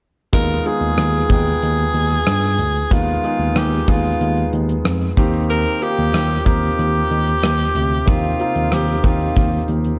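A straight 4/4 groove at 93 BPM from a gated 80s drum kit of punchy kick, hi-hat and rim click drives this uplifting, romantic 1980s-style pop excerpt, where a raspy alto saxophone with light vibrato and slapback echo carries the melody over a clear, intimate concert grand piano with audible action noise and a bell-like, barky tine electric piano holding down the bass, all moving from Abm6 to Eb6 at 5.2 seconds in a dry, up-front mix.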